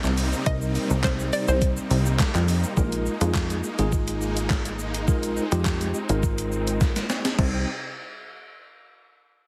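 A straight 4/4 dance-pop groove drives this short, bittersweet yet confident cut, built on a gated 80s digital drum machine with a thumpy kick, a gated-reverb snare, handclaps, hi-hat, shaker and crash, all overdriven and sitting up front with a small-room character. A punchy, funky analog bass with a fast filter pluck pumps under the sidechain, while huge, lush supersaw chords spread detuned and airy across the register, their brightness tamed by a low-pass filter and breathing with the same pumping. A hollow, bouncy square-wave pluck carries a brief melody with chorus and delay, stopping at 2.2 seconds, and a bell-like tine electric piano enters at 0.5 seconds with clean, direct accompaniment that also pumps and is filtered. The harmony moves from Cm7 to Bb7sus4 at 2.8 seconds, and a drum fill leads into a return to C minor at 7.4 seconds. The mix is dry and heavily compressed, with a loud, radio-ready sheen.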